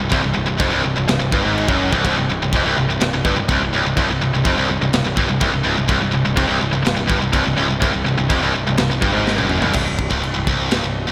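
Epic and aggressive, this heavy metal excerpt drives at 124 BPM in a straight 4/4, cut from a longer piece. Two bright, up-front electric guitars carry the riff low in the register between C2 and Ab2, one high-gain and heavily distorted, the other tight and distorted with a slapback echo, and it drops out at 9.7 seconds. Beneath them a fuzz-laden picked bass, overdriven yet round, holds the low end an octave down. The acoustic drum kit, tight in the kick with a medium-tuned snare and a rolled-off top, works crash, toms, kick and snare, and a fill between 9.3 and 9.8 seconds pushes the music from its opening power chord on C into a brief closing passage on a rootless Bbmadd9 over C. A moderate scoring-stage reverb gives the mix a big arena sound.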